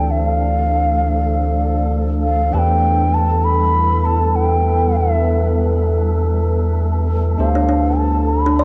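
A swung downtempo groove at 99 BPM in 4/4 sets a meditative, hypnotic mood in this short cut from a longer piece, moving from Dm7 to Em and back over a deep, round analog bass held up front. A hollow, airy bansuri carries the melody with vibrato through cassette tape and analog delay, while a bell-like tine electric piano sits clean in the background beneath a blurred, evolving granular cloud pad and a breathy, wind-like noise texture, both bathed in their own reverb. At 7.6 s a woody, plucked kalimba joins with short arpeggios, and the whole home cassette recording carries a light reverb.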